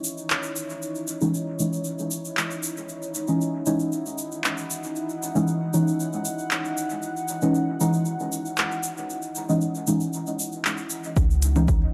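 A dark, detuned ambient pad with a slow attack and long release opens this meditative dub techno excerpt in C# minor at 116 BPM, pumping gently alongside a grainy, bright egg shaker, with a deep house kit of handclaps and smooth hi-hats entering at 0.3 seconds. From 1.2 seconds a mellow, warbling chord stab with a vintage cassette character sits up front, its filter sweeping as chorus, phaser and dub echo trail it around a C#madd9 chord inside a moderate echo-chamber reverb. At 11.2 seconds a round, soft sub bass, a punchy layered kick and overdriven background bongos arrive together in the closing moments.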